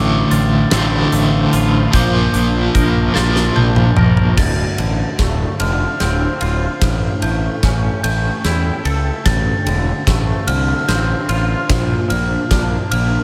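A light reverb frames this cinematic, melancholic post-rock excerpt in D minor, moving at a slow 49 BPM in 6/8 as a detuned, airy pad with chorus and tremolo holds sustained chords in the background while a bell-like glockenspiel played with rubber mallets and a twangy, compressed clean electric guitar, both carrying tape echo, spin arpeggios over a round, fuzzy fingered bass. A cranked, overdriven stack guitar with tremolo drives an up-front riff until 4.4 seconds, as a huge arena drum kit with a fat snare, punchy kick and bright cymbals plays a fill from 3.2 seconds. From 4.4 seconds the drums keep filling through a build-up over Dm7, A7 and Bbmaj7 chords.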